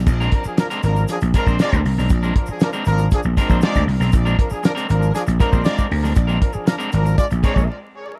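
A straight, strutting 4/4 funk groove rides on a damped 70s drum kit with a fat snare, tight kick and dark cymbals up front, a growly, punchy vintage slap bass, a twangy, slightly broken-up electric guitar bathed in spring reverb, a clear, tight horn section with a smooth top and tape echo, and a grainy tube shaker tucked in the background, all over a Bb9 chord in a dark production with vinyl crackle and little reverb, cut from a longer piece and ending in a brief break at 7.7 seconds.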